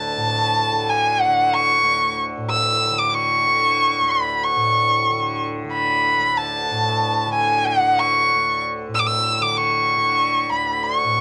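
Meditative and radiant, this short cut from a longer Hindustani classical piece in raga yaman on D moves at 93 BPM in a straight 5/4 and gradually speeds up across its 11.2 seconds. A single bowed violin sits up front with the melody high in its range, its warm, smooth-topped tone shaped by expressive vibrato and portamento. Beneath it, a softly plucked acoustic tanpura holds a low, buzzing, shimmering drone, all captured as a home cassette recording with light reverb.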